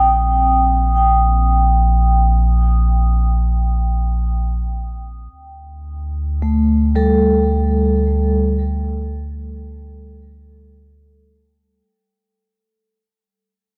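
A vibraphone played with soft mallets rings out in mellow, metallic arpeggios from G3 to G5, its slow motor vibrato and diffuse ambient delay drifting over a deep, round sine sub bass that holds between Bb1 and D2. This melancholic, reflective ambient fragment moves in free time from Gm/Bb to D5 at 5.3 seconds, bathed in a huge, moderate reverb with a dark top end. Cut from a longer piece, it begins fading at 3.1 seconds and is gone by 11.9 seconds.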